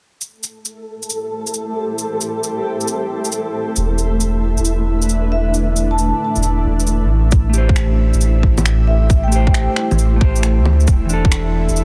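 An overdriven kit of electronic shaker, finger snaps and bongos, re-recorded in a small room, opens this melancholic, wistful future garage excerpt at 135 BPM in A minor, swung on the sixteenths. It is soon joined by a flickering, grainy granular texture and a cloudy, evolving pad that pumps with sidechain over Am7 and E7sus4. A round sine sub bass with tube saturation arrives at 3.8 seconds, followed by a dark, ringing vibraphone melody with fast motor vibrato and digital delay. From 7.3 seconds a tight, up-front overdriven kick anchors the second half, joined at 7.5 seconds by a clean, fingered electric guitar with delay, all set in digital ambience and a dense, heavily limited master.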